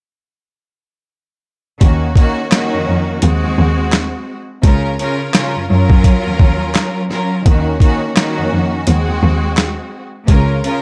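A gritty, pitched-down boom-bap drum kit sits up front in this nostalgic hip-hop excerpt, its compressed, sampler-style sound carrying a thumpy kick, a medium-tuned snare, hi-hat and handclaps with a tape-like warmth. The groove moves at 85 BPM in 4/4, swung at 60% on the sixteenths. Entering with the drums at 1.8 seconds, a lush bowed string section plays the accompaniment in a focused, clear studio sound with a smooth top and vibrato, also placed up front. Beneath it, a solo bowed cello carries the bass line with expressive vibrato and portamento, its tone nasal and boxy, until 10.6 seconds, while the strings and drums run to 10.8 seconds. The harmony cycles through Ebm7, Ab7/Eb and Db6, and a small room reverb wraps the whole in a dark, warm production.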